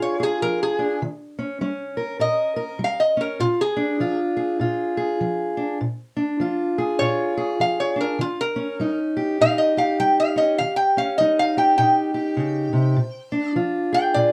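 A lap resonator guitar with a metallic, nasal slide tone carries the melody up front from the opening, taking a steel-bar solo across the whole 14.3 seconds over a boxy, parlour-style fingerpicked steel-string acoustic guitar, the pair swinging through a laid-back, rollicking acoustic country blues cut from a longer piece that moves between Bb7 and Eb7 in a dark, warm production with light reverb.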